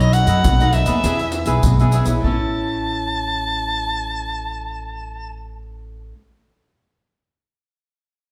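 Playful and joyful, this short cut from a longer samba and choro piece moves at 100 BPM in a straight 4/4 feel in A major. A bright, close-miked soprano saxophone sits up front, carrying the melody in a jazz-style solo with vibrato until 5.4 s. Beneath it, a crisp, picked cavaquinho and a classical nylon-string guitar, fingerpicked on fresh strings with audible finger squeak, fill out the accompaniment. A woody pizzicato upright bass anchors the low end. Egg shaker, pandeiro and a deep surdo drive the groove before dropping out at 2.4 s. The harmony moves from B7 to E7 before settling on A at 2.2 s, and the band plays live together in one room with a wet stone reverb.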